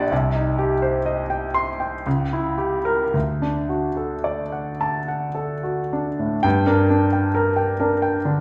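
A solo concert grand piano opens on a C minor chord, its deep bass and audible action noise giving the sound an intimate, natural presence. This romantic character piece in G minor moves in a slow, flexible 3/4, somewhere between 53 and 67 BPM, with rubato that lets each phrase breathe. The harmony shifts through C#dim7 and onto D, building a passionate, bittersweet tension, while the piano ranges from low Bb1 up to C6. At 6.4 seconds a new section begins, settling onto G minor. The instrument sits close, yet a reverberant recital hall adds a sense of distance, as though heard from further back in the room, in this brief passage cut from a longer piece.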